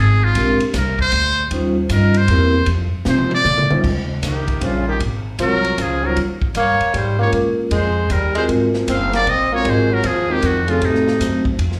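A buzzy, thin muted trumpet and a woody, thumpy upright bass open this relaxed small-group jazz waltz at 155 BPM in a swung 3/4, with a polished drum kit of dark cymbals and punchy kick and a mellow vibraphone with slow motor vibrato joining at once. The trumpet solos with light vibrato and scooped notes, a drum fill leads into a new section, and at 4.2 seconds a breathy, subtoned tenor saxophone enters as a second line over changes like Bb13, Eb13, Fm7 and Adim7. The trumpet, vibraphone and saxophone carry a slapback echo, and it all sounds like a live club gig heard through the venue's PA, with club reverb and small room ambience, cut from a longer piece.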